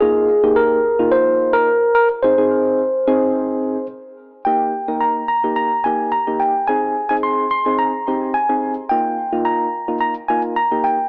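A straight, steady pop groove in four carries this bright, upbeat fragment of a longer piece, where a worn, slightly out-of-tune tine electric piano sings the melody up front across the whole 11.1 seconds. Beneath it, soft, round synth keys with a detuned, chorused shimmer and fast-attacking, decaying notes supply mellow chords moving from Bbsus4 through Ab and Eb and back. A moderate plate reverb surrounds the parts, while the gritty cassette-tape character and small-speaker sound give the whole a lo-fi, homespun charm.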